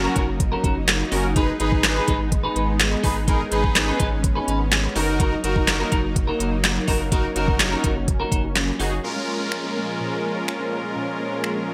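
Upbeat and summery, this dance-pop excerpt moves at 125 BPM in a straight 4/4, cut from a longer piece and opening straight into a drop built on F#, G#m and D#m/F# chords. A big, bright polysynth with a fat, detuned sawtooth edge and subtle chorus plays the accompaniment over a lush, full-bodied supersaw pad holding sustained chords through analog chorus, both pumping against the sidechain. A clean, twangy electric guitar with a scooped, compressed tone picks a riff through lush chorus, while a round sine sub bass, also pumping, anchors the low end until 9.0 seconds. Up front, a smooth R&B drum kit with a knocking kick, deep snare, smooth hats, finger snaps and handclaps carries a tape-like character and gated reverb. At 9.0 seconds the harmony moves to A#m7 as a very quiet, punchy unison pluck with a filter sweep plays arpeggios and an electronic downlifter enters, all within a bright, 1980s-style digital production with light reverb.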